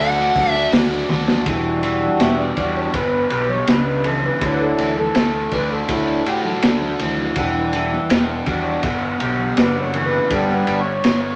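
Psychedelic rock with a hypnotic, dark mood, this short cut from a longer piece moves at an unhurried straight pulse in a moderate club reverb. A dark, compressed fuzz lead guitar plays a brief up-front melodic phrase at the very start and stops by 0.7 seconds, while a biting, double-tracked overdriven guitar plays a riff through a phaser and a punchy fuzz bass anchors the low end. A crunchy breakbeat kit enters at 0.4 seconds with gritty, saturated snare and tight kick under rolled-off cymbals, alongside very quiet, ringing congas struck with hard hands. After a drum fill, the hand-pumped harmonium, sustaining chords from the outset, steps forward as soloist from 1.5 seconds, its reedy, breathing tone close-miked and dry against the band. The harmony cycles between Em7 and Dadd9 before landing on G near the close.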